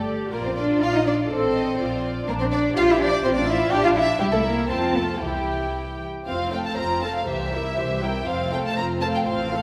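In a rubato 2/4 at 114 to 126 BPM, this stormy, dramatic classical-period movement for string orchestra in F major sets a dark, sul tasto violin melody with light vibrato over a second violin line, a pure, floating viola accompaniment, a close, smooth-topped cello bass and an intimate chamber double bass section, every part bowed with a soft attack and bathed in wet scoring-stage reverb.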